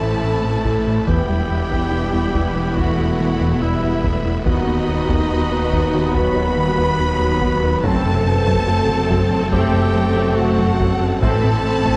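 A cinematic hybrid of orchestral and electronic film score in E harmonic minor at 71 BPM, relentless and futuristic, where a duduk with vibrato, scooped notes and delay carries the folk-style melody over violins, with one section high in the background and another lush and expressive on a second line, a rich viola section, and cellos and double basses very quiet beneath. A hollow, flute-like pad and a French horn section hold sustained chords, bright trombones join from 1.1 to 11.5 seconds, a tight, detuned sequenced synth runs arpeggios, and a round analog bass riff sits with a snarling, distorted saw bass growling underneath. Taiko drums with hard sticks enter at 0.7 seconds, close and dry, while the harmony moves from Amadd9 through Emadd9, B/D# and F#dim back to Amadd9 in a reverberant scoring-stage space.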